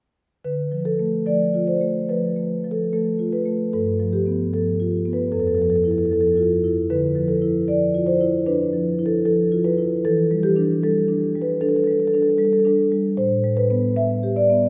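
Hypnotic and flowing, this rubato contemporary classical excerpt for solo marimba features a mellow, round, up-front marimba played with soft mallets from 0.4 to 14.7 seconds, moving through Dm, G7, Fmaj7, Dmadd9, Em7 and Am9 chords within a lingering church reverb.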